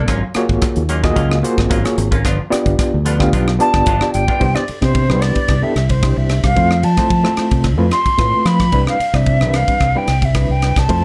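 Funky and bright, this electric jazz fusion excerpt moves in a straight 4/4 groove beneath a dark, softly reverberant production. An overdriven reed electric piano carries the accompaniment throughout, its gritty, reedy tone pulsing with fast tremolo through a combo amp. A fingered electric bass sits low and round, and a crisp, polished drum kit with a tight kick, hi-hat, ride cymbal and rim click stays up front. A clean, compressed semi-hollow guitar adds picked stabs bathed in lush chorus until 4.4 seconds, over chords moving from Ab13sus4 to G7. A concert flute enters at 3.6 seconds with an airy, expressive, tongued melody, distant and rich with vibrato, as the harmony settles onto Cmaj9 and Fmaj7.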